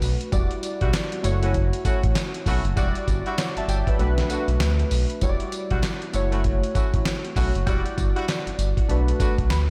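Light reverb and a digital ambience give this new jack swing clip a polished sheen, while the dusty, sampler-style drum kit sits up front with a thumpy kick, fat snare, handclaps, hi-hat and tambourine, compressed, gritty and tape-warm, as if re-recorded in a large room. At 98 BPM in 4/4, with a swung sixteenth-note feel in E dorian, the groove is punchy and bouncy as it cycles through Em9, F#m7 and Bm7. Underneath, a smooth gliding synth bass blends sawtooth and triangle tones with portamento, vibrato and a moving notch for a mellow, sustained low end. Analog keys supply round, evolving chords from detuned pulse and sawtooth waves, shaped by a filter sweep and chorus. From 0.8 s a mellow, tight horn section adds jazz-style stabs with light vibrato, tape echo and slapback echo. The kick drops out between 4.0 and 5.2 s, and the keys close the clip with a short fill at 9.2 s.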